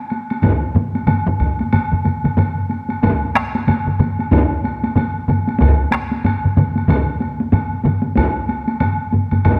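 This excerpt of Japanese traditional taiko music opens at 0.1 s with a solo taiko struck with heavy sticks, its tone compressed and saturated. A woody woodblock plays alongside it. From 0.4 s three taiko ensemble parts join: two play close and dry, one with hard sticks and the other with heavy sticks set in the background, while a third, also with hard sticks, shares the woodblock's distant, large-room sound yet sits up front. The mood is powerful and ceremonial, with a swung sixteenth-note feel in 4/4, detailed miking and a lush concert-hall reverb.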